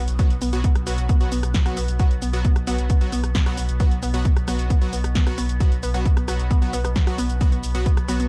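Driving peak-time techno at 133 BPM, this industrial, intense passage from a longer track sits on a B5 chord, with a dry, punchy electronic kick up front and a saturated, thick sub bass with overdrive and a low-pass filter pumping beneath it. An analog drum machine adds hi-hat, rim click, shaker and a punchy snare, while a bright, detuned supersaw stab with digital delay enters at 0.2 seconds. A lo-fi, warbling pluck riff with chorus and dub echo and a resonant, overtone-sweeping drone drifting in the background fill out the dark, digitally ambient mix, the stabs, pluck, drone and bass all pumping to the sidechain.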